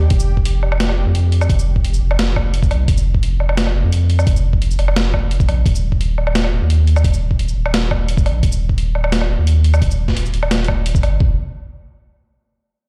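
Tense and cinematic, this half-time drum and bass fragment is cut from a longer piece and moves with a heavy, held-back feel. A deep, thick sub bass with a triangle-like tone and tube saturation sits up front, its fast attack giving way to sustained notes that span from Eb1 to F2. An electronic kick drum adds a thumpy, gritty punch. Beside it, a boom bap sampler-style drum kit supplies hi-hat, shaker, woodblock and a high-tuned snare, all compressed and naturally pitched. Both drum parts were re-recorded in a large room, giving them a roomy, bare-walled character played back through a big sound system. The bass continues alone briefly after the drums drop away at 11.3 seconds, before the bass itself stops at 11.4 seconds.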